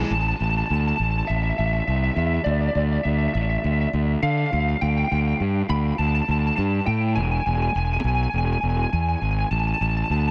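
Brooding and cinematic, this short post-rock cut pairs a dark, slightly broken-up lead guitar melody, colored by analog chorus and tape echo, with a growly, punchy fuzz bass that sits up front through chords moving from A5 through Dmadd9, G5/D and E, all of it soaked in a huge ambient reverb for a dreamy mix.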